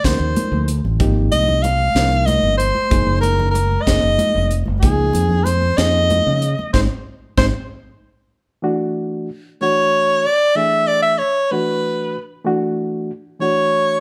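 Recorded live in one large studio room with moderate reverb, this bright, funky electric jazz fusion excerpt in 6/8 puts a breathy, close-miked soprano saxophone up front, its clear jazz melody carrying vibrato, subtone and a soft attack. Beneath it, a reedy, worn and slightly out-of-tune electric piano plays accompaniment, lightly overdriven through its built-in speakers. A warm fingered electric bass sits up front alongside a crisp, polished drum kit with a high-tuned snare and punchy kick, while soft-handed congas stay in the background; after a band accent at 6.7 s, those three stop at 7.5 s, leaving saxophone and electric piano alone for the new section from 8.6 s.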